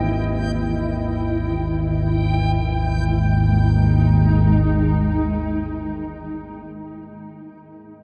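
A low analog drone anchors this dark ambient excerpt, sitting up front between Ab1 and Eb2 with a sawtooth and pulse-wave body that is wave-folded and thickened by chorus. A granular cloud pad sounds alongside it, spanning Ab3 to Eb5 and holding blurred, detuned sustained chords in a mellow haze, while a reversed, bright triangle texture hovers on G5 with a dreamy, swelling quality until 2.6 seconds. Deep beneath these layers, a boxy concert grand piano plays arpeggios that remain barely audible and continue to 8.0 seconds, after the drone fades out at 6.4 seconds. The piece floats in free time, tuned to A4 = 441 Hz, with the harmony moving from E to Ab5 at 2.6 seconds. A huge, cavernous reverb and worn cassette tape with warbly pitch drift give the whole an ominous atmosphere.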